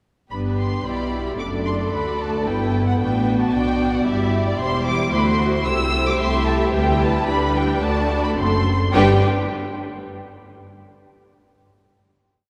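A dark-toned first violin section carries the melody of this graceful, lively classical-period movement for string orchestra, its bowed line shaded with vibrato and portamento and finished with a smooth, lush top. Set in G major at a quick 111 BPM in a straight 4/4, the piece is a short, complete statement. The second violins add a warm, expressive counterpart of independent inner lines and sustained chords, while the violas fill the middle with even, rich harmony. Beneath them, the cellos sit in the background with a walking bass, and the double basses double that line with a focused, close presence. The harmony moves from G through D/F#, C/E and G/D to a D7 before all five sections arrive on a final open G chord at 8.9 seconds and stop at 9.2 seconds. A wet church reverb with a 3.4-second decay surrounds the strings and lets that last chord ring on.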